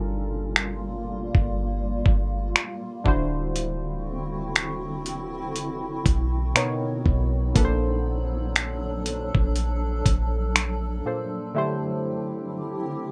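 A slow, swung groove in 4 sets a late-night, longing contemporary R&B mood in this excerpt from a longer piece. A dusty, sampler-style kit of finger snaps, hi-hat and a thumpy kick sits up front from 0.6 s, its gritty, overdriven tone sounding compressed and re-recorded in a small room. Beneath it, a clean 808-style bass gives deep, boomy, sine-like notes with a fast attack that decay into darkness, also placed up front. Round, sawtooth-based analog keys carry the accompaniment with a filter sweep and a chorus shimmer, while a cloudy granular pad holds blurred, evolving, wave-folded chords that bloom slowly and pump against the beat through its own built-in reverb. The harmony drifts from Gm7 through D9 and a pair of major-ninth chords before the drums and bass fall away, and a short break on D9sus4 at 11.6 s leaves the keys and pad hanging in a dry, close sound.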